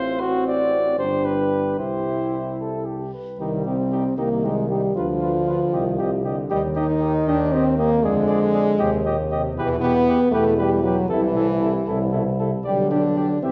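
In a straight 6/8, this short, triumphant and noble classical brass quintet passage sets a dark, smooth cornet melody over a mellow flugelhorn second line with light vibrato, while a close-miked French horn sits up front in the accompaniment, a soft-attacked trombone lingers in the background, and a warm, distant tuba anchors the bass, all in the wet bloom of a recital hall as the harmony darkens into minor at 3.4 s before turning brighter again at 9.6 s.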